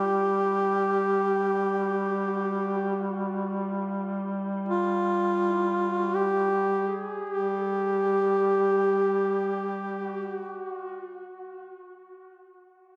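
Soaked in a lush, dreamy hall reverb with a 2.5-second tail, this short cut from a longer Caucasian folk lament sounds mournful and full of longing. It moves in free time and gradually slows down over its first 7.3 seconds before shifting into a new section. A warm, close-miked duduk carries the melody up front, its vibrato-laden line moving between F4 and G4 and trailing off into a diffuse ambient delay until 10.5 seconds. Beneath it, a second duduk holds a drone on G3, sounding distant and roomy, with its own vibrato and scooped notes in a folk style. The drone sits lower in the mix and sustains to 10.6 seconds, giving the lament a steady, grieving foundation.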